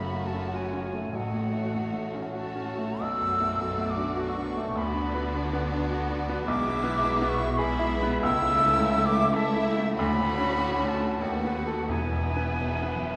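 Bathed in a wet church reverb, this passionate romantic excerpt for piano and orchestra moves in a rubato 3/4 between 84 and 110 BPM, with a clear, present baby grand carrying the melody up front as a violin section also carries the melody softly in the background. An airy silver flute and a second violin section trace supporting lines, while a very quiet viola section fills in the harmony and rich, bowed cello and double bass sections anchor the bass with vibrato. Very quiet hard-mallet timpani enter at 11.9 s as the harmony arrives on E.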